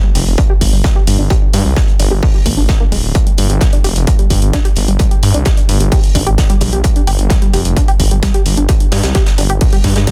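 Driving peak-time techno at 130 BPM in G phrygian, this relentless, hypnotic excerpt is cut from a longer piece and built on a distorted, layered electronic kick that sits up front, a thick, menacing detuned saw bass pumping against it, and a tight sequenced synth riff of sawtooth and pulse tones with chorus, tube saturation, digital delay and a filter sweep running across the whole 10.1 seconds. An analog, tape-toned electronic hi-hat joins at 0.2 seconds alongside a vintage acoustic kit of hi-hat and medium-tuned snare, its rolled-off top and pumping small room kept in the background. The sound is dry, dense and heavily limited.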